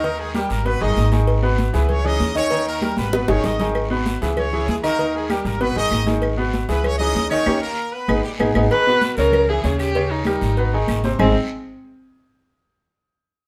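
Set in a moderate studio reverb, this fiery, driving salsa excerpt places the piano, upright bass and viola up front. A punchy, tight horn section carries the brilliant pop-style melody until 8.6 seconds, over a bright concert grand piano whose accompaniment reaches into a deep bass register. The dark, thumpy pizzicato upright bass with gut strings anchors the harmony. In the background, high-tuned, damped congas sit alongside round, low-tuned cowbell and bongos and a raspy, saturated guiro, with dry, woody claves joining at 3.8 seconds. After a drum fill and a full-band accent, a single rich, focused bowed viola with vibrato takes the melody at 8.7 seconds and carries it to the cut.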